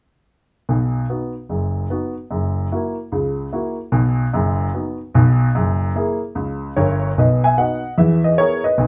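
A worn, woody upright piano enters at 0.7 seconds, sitting up front and sounding slightly detuned as it plays a playful, swinging stride jazz solo. The brief fragment, cut from a longer piece, moves into a new section at 7.2 seconds before ending at 8.9 seconds. The natural piano tone is wrapped in a wet studio ambience, giving the sense of a live performance in a single room.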